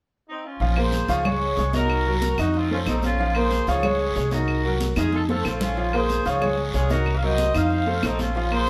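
A driving, danceable salsa groove in straight 4/4 at 186 BPM, set in Bb minor, opens this short cut from a longer piece, with congas, guiro and claves entering around 0.6-0.8 s. Bright, high-tuned congas with hard hands and raspy guiro sit behind a thumpy, dark pizzicato upright bass on gut strings and a clear, boxy upright piano. A mellow, punchy horn section with light vibrato carries the melody up front from 0.3 s over a cycling Bbmadd9, Db, Cm7b5, F7 progression, with a fill at 5.0 s, all played live in a moderately reverberant stone room.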